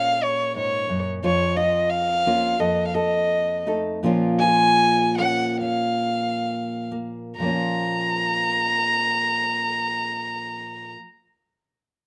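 Dry and close, as if captured in open air, this short excerpt from a longer acoustic folk-pop ballad pairs a dark, intimate violin, bowed sul tasto with light vibrato and a soft attack through a slapback echo, with a bright, full-bodied fingerpicked nylon-string guitar, both up front, in a melancholic, heartbroken mood that slows between 1.2 and 7.4 seconds before a new section begins.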